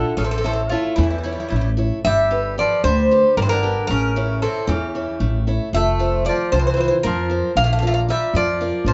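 Heard from further back in a small, wet room with its top end trimmed, this moody, brooding Greek folk excerpt in 7/8 at 228 BPM (eighths) speeds up as a bright, metallic, up-front bouzouki carries the melody over a second, warm double-strung bouzouki line, a boxy picked archtop guitar with finger squeak, and a woody, up-front pizzicato upright bass entering at 0.2 s, moving through A, Gadd9, A, F and Bb.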